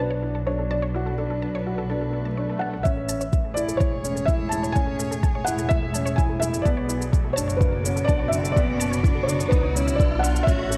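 Tender and luminous, this piano-and-strings electronica excerpt at 126 BPM sets a soft, felt-muted upright piano melody with delay over a mellow baby grand riff, a distant bowed string quartet and a woody double bass section pumping with the sidechain, and a detuned sawtooth pluck arpeggio in the background, before an electronic swell arrives at 2.1 seconds and an overdriven kick and shaker enter at 2.9 seconds as a riser builds over chords moving from Bm to Amaj7 and back.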